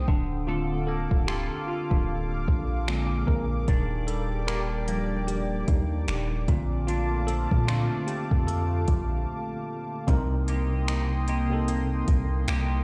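The recording sounds like it is played through a big sound system in a bare stone room, with a digital ambience and a grainy, tape-warm 12-bit sampler grit on the up-front drums. This is a longing, late-night contemporary R&B piece at 75 BPM in 4/4, with a 16th-note swing feel, cut from a longer piece. A bell-like tine electric piano, heard as if through its built-in speakers, takes a clean solo across the opening 10.1 seconds over a lush, thick, detuned sawtooth pad with chorus and sidechain pumping. A twangy, compressed clean electric guitar picks arpeggios through analog chorus and delay, while a deep, sine-toned 808-style bass holds long, decaying notes. The smooth drum kit, with a soft kick, silky hi-hats and finger snaps, sits in a large room, and a short break at 9.3 seconds leads into a new section on Cm7 after the harmony moves through Bbmaj7/D, Bb7 and Ebmaj7.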